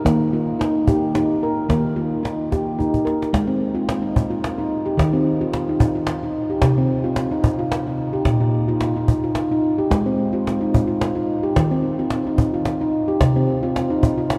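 A 3/4 pulse at 110 BPM carries this gentle, dreamy meditative world piece in Eb major, cut from a longer work. Up front, a ringing, dark handpan plays arpeggios from Bb2 to Bb4 with sharp finger strokes and a tape echo, while a woody cajon with faint snares adds soft-handed percussion, throwing a drum fill at 2.8 seconds into a new section at 3.3 seconds. The chords move through Eb, Ab, Cm and Bb5 with brief unharmonized gaps, all bathed in a vast cathedral reverb that lets each tone hang in the echoing space.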